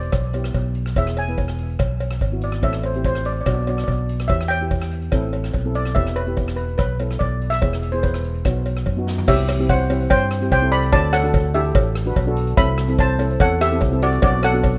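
A bright, close-miked steel pan carries the melody up front, its double seconds struck with hard rubber sticks for a dry, full, metallic shimmer touched by analog delay. Beneath it, a second steel pan on cello pans with soft rubber sticks supplies mellow, dark, smooth accompaniment, while a growly, amped fingered electric bass sits up front in the low end. This dramatic, intense calypso moves at 145 BPM in a straight 4/4 in E minor, cut from a longer piece, with harmony shifting among Em, E, Am and Bm before turning to C, Dadd9, Amadd9/C and Bm7 in a second section from 9.3 seconds. A street-band drum kit with a boomy kick, medium-tuned snare, rim clicks, hi-hat, toms and crash brings an airy, polished big-room sound roughened by vintage 12-bit sampler grit, and its fill at 9.1 seconds leads into that new section. A close, dry cowbell adds metallic percussion throughout, and the whole sits in light reverb and small room ambience with the rough feel of a home demo mix.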